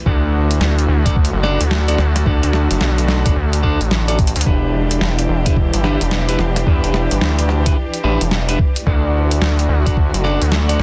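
A gritty, aggressive synth bass sits up front in this funky glitch hop excerpt, its nasal sawtooth tone driven hard through tube saturation. Alongside it, a thumpy, pitched-down electronic kick and a sampler-style boom bap kit with hi-hat and a medium-tuned, soft-clipped snare keep a 109 BPM 4/4 groove with a 63% swing on the sixteenths, and the kit enters at 0.5 seconds and plays a fill at 4.2 seconds. A clean, picked electric guitar plays stabs roughened by vintage 12-bit sampler grit and trailed by dub echo, all pumping with sidechain compression. In the background, a lush, bowed symphonic string section holds sustained chords while an airy, breathy pad with chorus adds a mellow, detuned texture, both breathing with the same sidechain pulse. The harmony moves from D to Em7 and back to D, tuned slightly sharp to A4 = 445 Hz, and the dense, heavily limited master carries a digital ambience and lossy artefacts.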